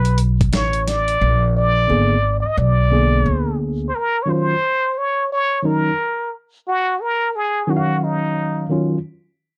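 Dark, lightly reverberant production frames this smoky, cool jazz-hop excerpt, where a breathy, plunger-muted trumpet whispers an intimate wah-wah solo melody with vibrato over a woody pizzicato upright bass that stops at 3.9 seconds, a gritty, thumpy sampler-style drum kit heard only briefly at the start, and a worn, slightly out-of-tune tine electric piano entering at 1.9 seconds as the harmony moves from Bb7b9 to Ebm9.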